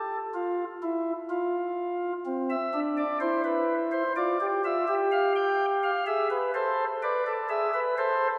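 In a straight, unhurried 4/4 at 63 BPM, this solemn, contemplative fragment of a baroque-style four-part fugue features a solo pipe organ on soft flute stops, sitting up front with a warm, baroque voicing that moves between C4 and G5. The harmony opens unaccompanied by chords before passing through Cmaj9 at 2.3 seconds, Dm/F and then E7/G#. A wet church reverb with a 2.9-second tail places the listener further back in the room as the piece is cut off at 8.3 seconds.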